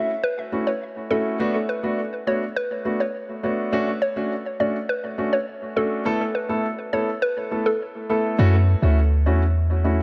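Dancehall at 103 BPM in F# minor, this short excerpt cut from a longer piece carries a hypnotic, tough mood over a straight 4/4 pulse. A hollow, bouncy square-wave pluck carries the melody from the start until 7.8 seconds, its filtered attack decaying quickly and softened by chorus and tape echo. Beneath it, a warm concert grand piano with a deep low end plays the accompaniment throughout, also trailed by tape echo. The harmony moves through F#m7, Bm7, Dmaj7 and Esus4 before returning to F#m7 at 8.4 seconds, where a boomy 808-style bass enters up front with a sine body, a noise layer and a fast, decaying attack. The echo-heavy mix sits in a small room with light reverb, giving the parts a close atmosphere.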